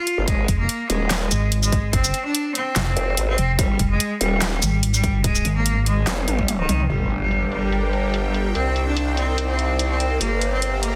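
Heavy wobble dubstep at 145 BPM in a half-time feel, this chaotic, densely limited excerpt opens on a drop where a biting, distant bowed cello melody with digital delay rides over a growling, formant-filtered bass, a pulsing, detuned pluck wobble bass, a punchy tape-warm kick and an overdriven drum kit with a huge snare, handclaps, hats, shaker and toms, until a drum fill at 6.1 seconds and a background impact at 6.9 seconds shift the chords from Fm to Gm and Cmadd9 as the kick and pluck bass drop out, a filter sweep sweeps the drums and a lush, sidechain-pumped supersaw pad enters at 7.2 seconds.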